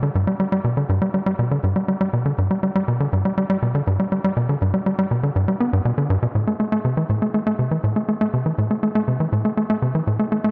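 A tight, punchy sequencer bass with sawtooth and square-wave colour and a fast-attack filter pluck plays alone and up front for the full 10.5 seconds of this mysterious, cosmic ambient excerpt in A minor at 121 BPM in straight 4/4, its delay and a moderate spring reverb filling an echo-heavy mix as the driving figure moves between G2 and B3 across two passes of the same section.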